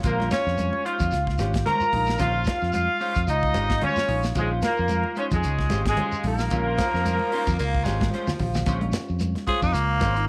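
A clear horn section carries the melody up front in this funky, hypnotic afrobeat excerpt, tightly voiced in octaves with light vibrato and a vintage pop sheen. Beneath it, a round, dark fingered electric bass anchors a Bbm9 groove, while a tight funk drum kit with a dry, polished snare and a tight kick drives a swung sixteenth-note feel. Thick-skinned congas and a grainy, mellow shekere sit in the background. A ringing Celtic harp plays fingerpicked arpeggios, and a clean, scooped electric guitar adds picked stabs with ensemble chorus further back. A breathy, growling baritone saxophone plays a second line from 6.8 seconds, a drum fill arrives at 8.0 seconds, and a raspy, gritty tenor saxophone solo enters at 9.5 seconds, all in a light, small-room ambience.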